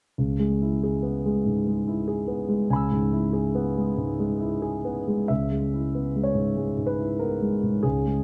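The rhythm moves in a free, rubato 4/4, with time stretching and settling in a wistful, reflective way typical of neoclassical minimalist piano. A solo concert grand carries the whole fragment from 0.2 s to 8.2 s, opening on a C#m7 chord and ranging from C#2 up to E6. Its tone is warm and sits up front, with a deep bass anchoring the lower register. A moderate studio reverb adds a modest sense of space around the instrument. The music shifts into a second section at 5.3 s, and the passage is clearly cut from a longer piece.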